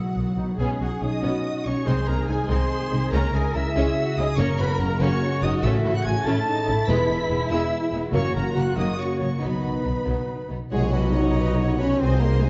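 A lush, vibrato-rich violin section carries the soaring melody of this heroic, cinematic adventure cue in a straight 6/8, with a second, smoother violin line, a focused viola accompaniment, an airy, very quiet flute ensemble, and ringing harp arpeggios filling in behind it. Distant, dark French horns and soft trombones sustain the chords while a roomy solo trumpet adds stabs, and woody cellos and up-front double basses anchor the bass. The orchestra lands a shared accent at 10.7 seconds as a close tam-tam sounds, all within a moderate scoring-stage reverb and a dark, mellow production in this excerpt from a longer piece.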